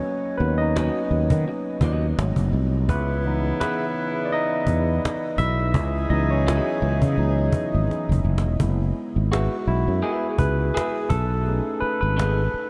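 A bright, barky tine electric piano solos over a woody cajon from the very start of this introspective, smooth neo-soul R&B piece, soon joined by an up-front, growly fretless bass, a slightly broken-up guitar with subtle chorus and diffuse delay tucked in the background, and mellow, distant horn stabs from 2.9 to 8.2 seconds, with a drum fill at 7.9 seconds, inside a dreamy mix soaked in huge ambient reverb and a faint mains hum.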